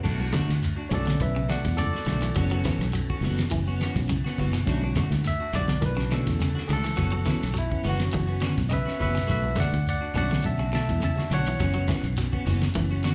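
A hypnotic, intense afrobeat groove at 104 BPM in 4/4 with a light sixteenth-note swing: a cloth-damped, thuddy drum kit with a fat snare and dark cymbals sits with an up-front, round, foam-muted fingered bass, while a grainy shekere fills in the background and very quiet, ringing congas stay close and dry. In B minor, the harmony alternates between Bm7 and F#7sus4. A barky tine electric piano, played through a combo amp with slapback echo, takes the solo from 0.1 seconds, over clean picked guitar stabs colored by analog chorus and slapback, and twangy, slightly broken-up guitar arpeggios in the background. It sounds like a live gig heard through the venue's PA, with club reverb and a dulled top end, in a 13-second excerpt from a longer piece.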